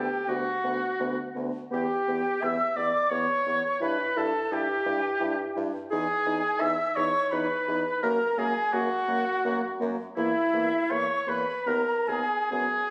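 The clarinet sits up front with a warm, smooth-topped tone, carrying an accompanying line in this slow, serene romantic movement for wind quintet, cut from a longer piece. Above it, a mellow silver flute sings the melody with vibrato and a soft attack, heard close by, while a clear oboe with vibrato shapes a tender second line. A French horn with light vibrato fills the middle of the accompaniment, and a bassoon with a gentle attack holds the bass low beneath the ensemble. In flexible 3/4 time at roughly 68-88 BPM, the harmony moves from a B minor chord toward B major from 5.9 s, arriving on a B chord over D# at 11.7 s. Captured on a phone in a recital hall, the sound carries a moderate reverb that lends the classical-style playing an intimate glow.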